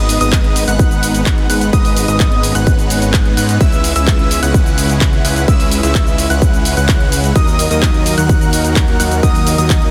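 This is a dense, heavily limited modern master with light reverb and a digital ambience. It is a short cut of euphoric, emotional festival progressive house in G# minor at 128 BPM, moving from G#m to C#m7 at 3.6 seconds and D#m at 7.4 seconds. A punchy, layered electronic kick sits up front from 0.3 seconds, with an overdriven big-room kit of handclaps, hi-hat and shaker from 0.1 seconds. Underneath, a fat, detuned analog bass with tube saturation and a filter sweep pumps against the kick alongside huge, bright supersaw chords playing a riff through dub echo. A catchy, full-bodied plucky unison lead spins high arpeggios, also echoed and pumping. Further back, a lush pad with a slow attack holds sustained chords, colored by chorus and phaser.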